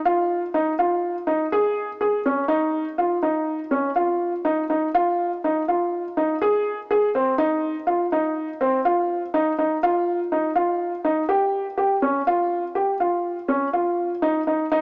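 Heard through a lush hall reverb and the small-speaker sound of a home cassette recording, this brief cut from a longer progressive instrumental has a homespun, intimate glow. A lone felt-muted upright piano sits up front across the whole clip, its soft, mellow tone, thin felt, short sustain and audible action noise giving the driving, intricate line in 5/4 a natural, close-up character. The piano stays in a narrow middle register, from C4 to Ab4.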